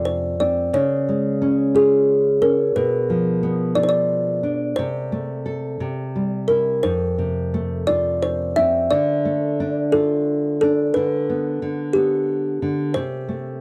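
A dry, close 1970s-style studio sound with light reverb frames this tender, innocent children's lullaby in a rubato 6/8 at 59 BPM, where an up-front, woody kalimba with a hollow-box, ringing, dark thumb pluck carries the melody over a full-bodied, deep classical fingerpicked nylon-string guitar accompaniment, moving from F through Db and Bdim to close on Am/C at 13.0 seconds before this cut from a longer piece ends.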